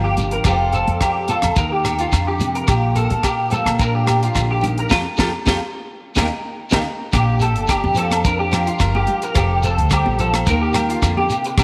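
A moderate echo chamber reverb gives this joyful, danceable highlife guitar band clip a roomy sheen, cut from a longer piece and moving at 108 BPM in a straight 4/4 in Bb major. Up front, an electric guitar at the edge of break-up plays compressed, picked arpeggios coloured by ensemble chorus and slapback echo, while a picked steel-string acoustic guitar with an auditorium body supplies quieter accompaniment. A woody, thumpy pizzicato upright bass anchors the low end, and a tight funk drum kit with a high-tuned snare, tight kick, hi-hat and rim click sits dry and polished near the front from 0.2 s. Behind them, grainy, saturated shekere, ringing agogo bells and very quiet, damped high-tuned congas played with soft hands fill out the percussion. The chords cycle through Fadd9, Eb and Bb6, and a band accent with a drum fill leads into a new section at 7.1 s.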